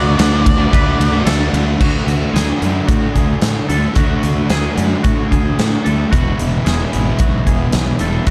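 Shoegaze-tinged dream pop rock at 111 BPM in D lydian, wistful and dreamy, with a dark production in a small room that begins with a brief dark octave-fuzz lead guitar melody on D5, heard only until 1.2 s. A round, punchy fuzz bass with overdrive sits under background guitars: a thick fuzz riff with subtle chorus, a hollow-body overdriven riff washed in reverse reverb, and twangy clean arpeggios with analog chorus and slapback echo. A huge arena drum kit enters at 0.2 s, up front with a punchy kick, bright cymbals and a pumping hall sound, as the harmony moves from D to E at 6.1 s in this cut from a longer piece.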